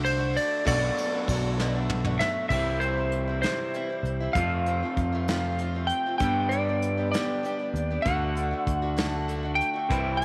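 Set in a moderate echo-chamber reverb, this open-road folk and heartland rock fragment in 6/8 puts a dark, slightly broken-up slide guitar with tape echo up front over a round, punchy electric bass, a boxy picked acoustic archtop, a lo-fi riff from an electric guitar through a small old amp and a soft brush drum kit, while a reedy, lightly overdriven electric piano sits in the background until 2.5 seconds, joining the drums in a fill from 1.6 seconds.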